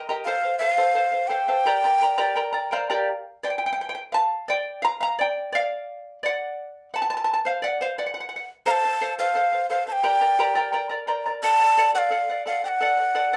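Andean folk for a small Andean ensemble, this excerpt moves at 86 BPM in a straight 2/4, its mood both wistful and festive. A bright, fingerpicked charango carries the accompaniment throughout, its double strings shimmering with some octave-doubled courses, sitting up front in the mix. A large quena takes the melody, its wooden, end-blown voice breathy with a straight tone, crisp attack and audible chiff, placed up front and a touch louder than the charango. The quena sounds briefly at the start, then falls away so the charango plays alone from 3.1 to 8.7 seconds over shifting harmony that passes through Dmadd11 to D. The quena returns at 8.7 seconds for a closing section that revisits the F and Gm chords before settling on D, all within a small room's reverb.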